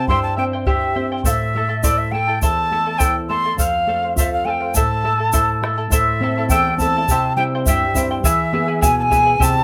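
Recorded live in one small, reverberant room, this short cut from a longer Andean folk piece moves at 103 BPM in 2/4, with a melancholic, earthy mood in A minor. Up front, an airy cane quena carries the melody with vibrato and tongued notes beside a shimmering, fingerpicked charango on double strings, while a full-bodied nylon-string guitar adds deep classical fingerpicked accompaniment. A round, dry bombo sounds throughout, and a grainy, bright egg shaker joins at 1.3 s as the harmony passes through C, Am, F and E.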